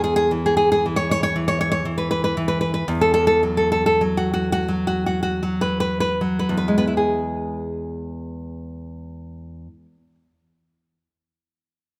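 An up-front, fingerpicked nylon-string guitar plays alone in this tender, warm romantic excerpt in E major and 3/4, its rubato drifting between 38 and 62 BPM and slowing through the opening 7.0 seconds as a chordless opening gives way to Esus24 at 2.9 seconds before settling on E when a new passage begins at 7.0 seconds, set in a moderate concert hall reverb.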